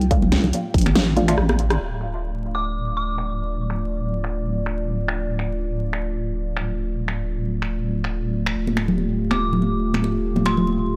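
Meditative and dark, this deep dubstep fragment moves with a swung half-time feel, pairing an up-front wobbling sine bass and a moody detuned analog pad with a layered electronic kit built on a huge snare and low-passed hats, while a punchy kick and a nasal filtered dub chord stab sound in the opening moments, acoustic congas appear at the start and return at 8.7 seconds, and an eerie inharmonic FM bell drifts through dub echo, over a gritty, saturated hardware sound flecked with vinyl crackle and a filter sweep on the drums from 1.8 seconds.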